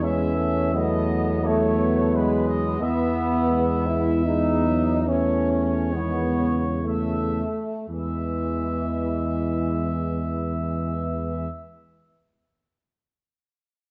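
A dark, up-front tuba anchors this lyrical, serene brass band excerpt on a low E, its light vibrato supporting a mellow, vintage French horn section that carries a second line beneath a distant, roomy trumpet section singing the melody. A very quiet solo trombone adds soft accompaniment alongside a smooth trombone section in the background, as the hymn-like piece in 3/4 and E major moves with rubato between 55 and 88 BPM, slowing from 1.8 to 7.9 seconds before settling on an E chord. A wet stone room reverb and a dark, warm production give the ensemble a hushed glow.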